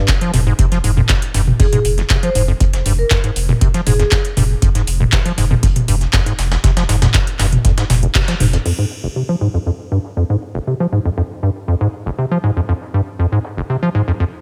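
A raw, gritty acid house excerpt with a light reverb, moving at 119 BPM in a straight 4/4 in F minor, built on a squelchy, resonant square-wave acid bass riff with overdrive and sidechain pumping that runs through the whole excerpt, joined by a round, deep analog bass holding F1 until about 8.6 seconds. A deep, tape-warm electronic kick and a booming analog drum machine with metallic hats, handclaps, toms and crash sit up front until a band accent at 8.2 seconds, while a dusty, compressed sampler-style kit of filtered hi-hat and medium-tuned snare ticks along in the background to the end. Early on, a metallic, ringing vibraphone with medium hard mallets and delay plays a short line between 1.6 and 4.1 seconds, and after 8.7 seconds the groove thins to acid bass and the dusty kit over an F minor chord.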